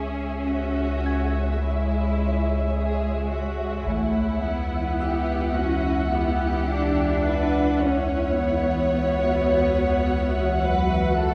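This cinematic suspense cue, cut from a longer piece, moves at a slow 53 BPM with a mysterious, ominous mood, shifting from C#m to Emadd9 at 3.9 s. Veiled, con sordino violin sections carry a lush melody and a close second line over bowed cellos and a background double bass section. A thick, saturated sub bass holds a drone beneath a flickering, grainy granular pad that sustains the chords. A bright, ringing harp glitters in the background until 8.9 s, and distant taiko drums struck with hard sticks sound between 3.9 and 6.1 s, all set back in a reverberant scoring stage.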